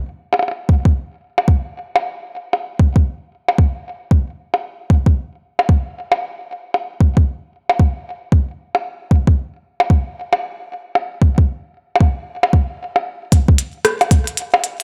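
A glitchy drum kit of clicky hi-hats, percussion blips and rim clicks sits up front from 0.3 seconds, its hats, percussion and snare softened by low-pass filters and scattered through digital delay and studio reverb. A soft electronic kick joins at 0.7 seconds, also up front with its own studio reverb, in this eerie, cerebral IDM piece at 114 BPM in 4/4 with a 62% swing on the 16ths. A light reverb frames the sound, and a new section begins at 13.3 seconds near the close of this excerpt cut from a longer piece.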